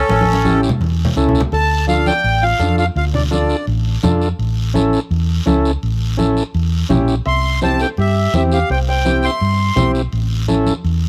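A reedy, up-front accordion opens this fiery, driving cumbia excerpt at 167 BPM, soloing over a round, dark hollow-body electric bass, ringing background congas, a raspy guiro, an overdriven combo organ with light vibrato and a drum fill, before a soft, felt-muted upright piano with audible action noise and analog delay joins at 1.5 seconds as the chords move from A7 to Dm, C and finally A, all captured with close, detailed microphones and little reverb.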